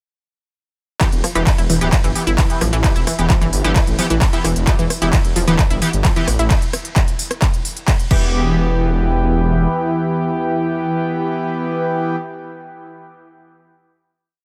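The recording sounds dry and close, with little reverb, and the mix hits hard from the first second. This is a short, driving piece of peak-time techno at 131 BPM in E minor, industrial in mood and sitting on a single E minor chord. At 1.0 s the drop arrives at once: a punchy analog kick pounds four-on-the-floor up front, and an overdriven, layered kit adds smooth hats, ride, rim clicks, handclaps on the backbeat and crashes. A thick, menacing detuned saw bass gallops in sixteenth notes beneath, pumping against the kick. Above it, a lush, warbling unison pluck repeats a 6-step sequence that drifts against the bar, and an edgy, nasal sync-sweep polysynth plays dotted-rhythm chord stabs, one shape moved in parallel, colored by chorus, phaser and dub echo. A deep, moody pad drones very quietly from 2.2 s. As the drums and pluck drop out, it and the polysynth carry the final hit from 8.3 s to the close, with the bass lingering beneath them until 9.7 s.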